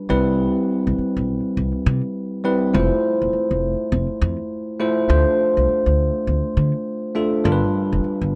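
Punchy and bouncy, this short excerpt cut from a longer new jack swing R&B piece rides a swung sixteenth-note feel in 4/4. A bell-like tine electric piano carries the accompaniment from the very start, its bright, clean tone sitting up front with a subtle chorus. The upright bass joins at 0.1 seconds, plucked pizzicato on steel strings, giving a woody, acoustic low end that is also placed close to the listener. The harmony moves through Cmaj7, Fmaj7, Dm7 and G7 over a single section, in a tuning set slightly below standard pitch. A plate reverb with a long 2.9-second tail soaks the mix, lending a dreamy haze around the two parts.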